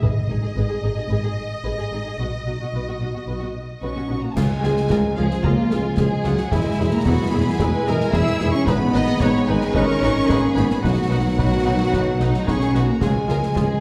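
A heroic, adventurous film-score fragment opens on rich, vibrato-laden violin sections carrying an expressive melody and a focused second line over lush violas, a close, very quiet cello section and bowed double basses, with a round, soft-malleted timpani stroke in the background, before a mellow French horn section enters at 3.8 s with sustained chords and, from 4.4 s, a faint trombone section, a smooth-topped solo tuba on the bass, and dry snare, bass drum and dark clash cymbals join, the ensemble heard from further back in a wet recital hall.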